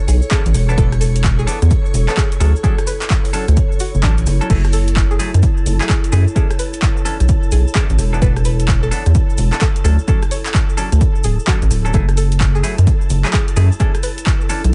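A silky string machine and a warbling, nostalgic tape-like pad open this moody, bouncy two-step garage cut, both sitting in the background with sidechain pumping while Bm11, E7sus4, Dmaj7 and F#m9 chords cycle beneath. A rubbery, wave-folded square bass sits up front beside an overdriven, punchy electronic kick and an analog drum machine of crash, handclaps, swung hi-hat and rim click, both re-recorded in a large room, while a grainy cabasa ticks quietly behind. Bright, compressed stabs from a clean semi-hollow guitar carry 12-bit sampler grit and digital delay, and a twangy, string-like resonator pluck plays the melody through chorus, cassette tape and delay, all inside a dim digital ambience.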